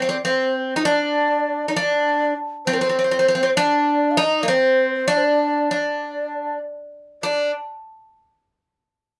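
In a straight 9/8, this melancholic, soulful fragment of a Turkish makam ensemble piece sets an up-front, bright, metallic bouzouki with double strings on the melody against a breathy, mellow low ney adding a vibrato-laden second line, both playing until 7.5 s as a new section begins at 7.2 s, heard through close, detailed microphones and light reverb.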